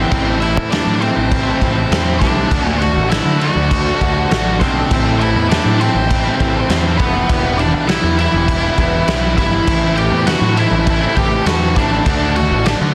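An up-front octave-fuzz lead guitar carries a dark, distorted melody over a gritty, punchy garage drum kit, an overdriven fuzz bass, a cranked stack guitar in the background and a very quiet thick fuzz guitar playing a riff, while a lush, woody bowed string section sustains chords underneath in this angsty quiet-loud alternative rock excerpt cut from a longer piece.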